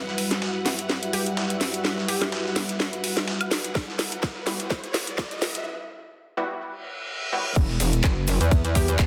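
A swung 126 BPM bass house groove in E minor struts with a swaggering, bouncy mood as a cracking house kit with metallic hats, a gritty, very quiet sampler-style kit, a glassy wavetable pluck, bold orchestra-hit-like stabs under a filter sweep, an evolving resonant pad, distant lush strings and an electronic riser with reverse cymbal build over a drum fill. A tight kick joins the build at 3.8 seconds, and the drop at 7.6 seconds unleashes an aggressive, saturated wobble bass with a grainy tube shaker inside a dense, heavily limited master.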